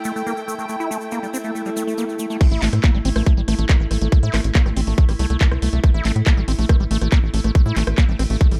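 A tight, layered electronic kick drum sits up front in this intense, hypnotic psychedelic trance excerpt, landing at the drop at 2.4 s alongside a drum kit of crash cymbal, handclaps, metallic hi-hat and rim click re-recorded in a small room. Before that, the opening pairs a grainy, bright tube shaker with a smooth, bowed studio string section carrying vibrato, while an evolving, morphing wavetable pad holds sustained chords through phaser and its own reverb; both pad and strings pump to the sidechain. A squelchy, resonant acid bass riff runs from the start, its filter sweeping through the opening bars, with phaser, digital delay and sidechain pumping shaping it. A background electronic swell leads into the drop, where a punchy, driving sequencer bass of sawtooth and square waves with ring modulation and a plucked filter anchors the low end prominently. The production is dark and dry, with little reverb.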